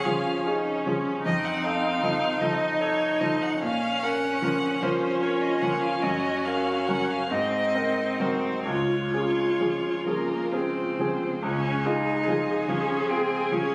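Captured on a phone in the room, this passage from a slow, lyrical romantic movement for piano quartet blooms in a reverberant recital-hall ambience. A rich bowed violin carries the melody with vibrato and portamento, joined by an intense cello second line with a smooth top, while a distant, focused viola and an up-front, vintage-toned grand piano with short sustain supply the accompaniment. The rubato phrasing in 6/8 feels warm and expressive throughout.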